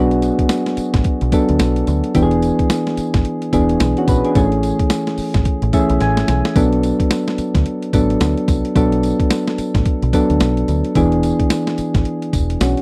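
A swung 16th-note groove at 109 BPM in 4/4 drives this punchy, slick new jack swing R&B cut from a longer piece, set in B dorian. A gritty, compressed sampler-style drum kit sits up front with a thumpy kick, high-tuned snare, hi-hat and tambourine, alongside a dark, foam-muted picked electric bass and soft, mellow electric-piano-like synth keys coloured by chorus, moving through Bm7, E7 and Amaj7. The keys fill from about 5.5 seconds, joined by a drum fill at 6.0 seconds, and the whole passage has a dry, close 1970s-style studio sound.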